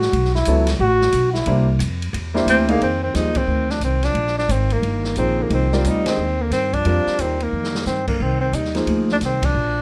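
A mellow, breathy trombone opens this modal jazz passage with a short solo from the background, over woody pizzicato upright bass and a small-room acoustic drum kit with dark cymbals and a boomy kick. A grand piano with audible action noise joins at 0.5 seconds, adding intimate accompaniment over suspended and ninth-chord harmonies. At 2.5 seconds a whispered tenor saxophone takes the melody up front, with soft attacks, scooped notes and vibrato, while the trombone continues as a second line with light vibrato. The swinging band hits a few accents together, and the drums play a brief fill at 7.5 seconds. Moderate club reverb gives the spiritual, cool excerpt a close, natural sense of space.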